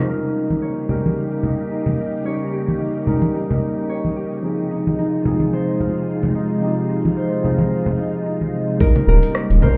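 A bright, clean tine electric piano sits up front in this wistful sunset chillout excerpt at 110 BPM with a swung 16th feel, moving from Eb7 to Fm7 over silky, mellow string-machine chords and ringing Celtic harp arpeggios that carry a filter sweep until 8.8 s. Soft-handed, saturated congas play along, and at 8.8 s a gritty, thumpy electronic kick and a layered deep house kit with dark hats arrive alongside a fingerpicked nylon-string guitar melody, while a deep, round analog bass enters at 9.1 s. The whole mix sounds muffled as if heard through a wall, with club ambience and a moderate plate reverb.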